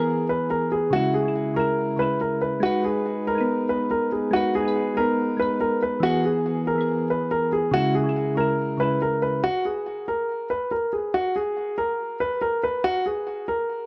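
This dark, brooding hip hop excerpt moves at 141 BPM in 4/4 with a half-time feel. A deep, mellow concert grand piano carries the melody between F#4 and B4, sitting up front and trailed by a digital delay. Beneath it, soft electric-piano-like synth keys supply a round, gentle accompaniment with sine- and triangle-like tones, a fast attack and decaying notes, colored by chorus, tremolo and a filter sweep. The harmony moves through E, C#m and G#m before returning to E and C#m. At 9.5 s the synth keys drop away, leaving the piano alone until 13.9 s, all set in light reverb and a small room ambience.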